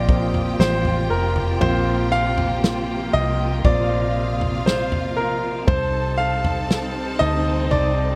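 Heartfelt and hopeful, this short pop ballad excerpt centres on an intimate grand piano with audible action noise and long sustain, backed by a round, foam-muted electric bass, an acoustic drum kit of punchy kick, snare and toms, smooth bowed strings with portamento holding chords in the background, and a distant, lush violin section carrying a bright second line as the harmony moves from Bbsus2 to Cmadd9 at 5.7 seconds in a dry, close-sounding room.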